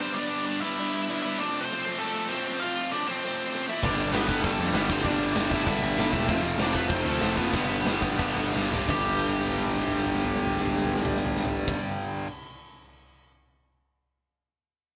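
A straight 4/4 punk rock pulse at 167-197 BPM drives this rebellious, upbeat excerpt in G mixolydian, where a nasal lead guitar with a parked wah carries the melody over a biting overdriven guitar riff until an up-front distorted electric guitar, a growly fuzz-picked bass and a big, natural rock drum kit with punchy kick and bright cymbals join at 3.8 s, the band slowing from 6.3 s before a drum fill carries it into a new section at 8.9 s, where another fill follows, heard as a live band in one room with moderate reverb.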